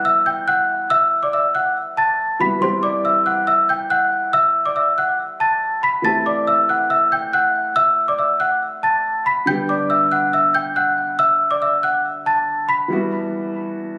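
A half-time 140 BPM hip hop pulse underpins this tense, cold fragment, where a bell-like, slightly out-of-tune celesta carries an up-front delayed melody over a soft, muted felt-muted upright piano moving through Emadd9, Am7 and G, until the celesta drops out at 12.9 seconds and the piano carries on alone to 14.0 seconds, all heard through a murky phone capture of a reverberant club room with a long plate tail and a dulled top end.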